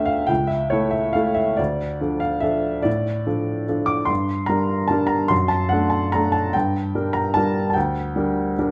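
A clear, woody upright piano plays alone from the start, a bittersweet, nostalgic classical waltz in D minor and 3/4, moving with a free rubato at about 136-155 BPM across a range from C#2 to D6. The harmony turns from A/C# to Dm, then settles toward Gm at 4.1 seconds and passes through D/F# before returning to Gm. Close, detailed microphones keep the instrument up front and intimate, catching its audible action noise and long sustain within a moderate recital-hall reverb, in this short fragment cut from a longer piece.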